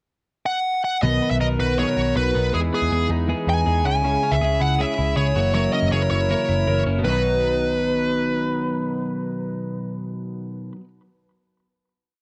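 Nostalgic, youthful indie pop at 160 BPM in B major, where a bright, overdriven lead guitar picks an up-front motif-based melody from 0.5 seconds over two twangy twelve-string electric guitars (one fingerpicking a roll pattern of arpeggios, the other folk-strumming barre chords in the background through spring reverb) and a dark, round, foam-muted bass driving eighth notes, moving through Bmaj7, Emaj7, C#m and F#7 before settling on a final B chord at 7.1 seconds in a light reverb.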